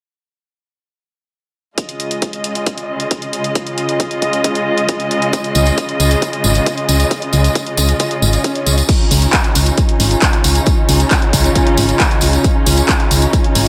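A straight 4/4 pulse drives this soaring, euphoric stretch of uplifting trance, cut from a longer piece. From 1.8 seconds a heavy, layered electronic kick, filtered at the low end, plays alongside a punchy analog drum machine whose crash cymbal, handclaps and hi-hat sound re-recorded in a large room, with the hats and cymbals pumping against the sidechain. Up front, a dark chamber string ensemble holds bowed, expressive chords with vibrato and a smooth top, roughened by vintage 12-bit sampler grit and pumping in the same way. A jingly acoustic tambourine, close and dry, joins shortly before a solid FM bass arrives at 5.6 seconds, round and digital with a fast attack that decays, sitting up front and pumping beneath the strings. A brief electronic swell in the background leads into a new section at 8.9 seconds, and light reverb gives the mix a modest sense of space.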